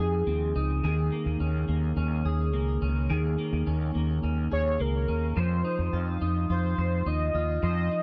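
Hazy and melancholic, this dream pop fragment at 106 BPM in straight 4/4, tuned to A4 = 438 Hz, sets clean, twangy, compressed electric guitar arpeggios with analog chorus and delay over a round, punchy fretless bass played up front, while a velvety, detuned sawtooth synth lead with chorus, delay and vibrato sounds briefly at the start and returns at 4.5 s with a sustained melody, over chords moving from Fm7 to Eb7sus4 and settling on F5 within a dark, warm production and light reverb.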